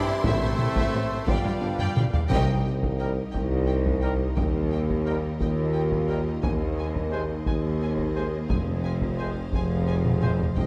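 A slow 6/8 pulse at 58 BPM, counted in dotted quarters, drives this dramatic, relentless cinematic orchestral cue in F minor, cut from a longer piece. Taiko drums played with heavy sticks in a live room anchor the rhythm alongside close, dry timpani with medium mallets, which play until 3.3 s and return at 8.5 s. Drum fills and a full-band accent at 2.3 s mark the move from the brief opening passage into the longer second section. The lead melody sits in a lush violin section with soft attack and expressive vibrato, joined by a distant, intense second violin line and a focused viola accompaniment, while a clear string section holds sustained chords. Mellow French horns and a tight, vintage-toned trombone section add held brass chords, a trumpet punctuates with stabs in the background, and the weighty low end comes from a rich cello section, a smooth, close double bass section and a roomy tuba sharing the bass line. 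The harmony moves from Am and G7 through Cm7, Eb and Ab/Eb to a closing Fm, set inside a moderate scoring-stage reverb.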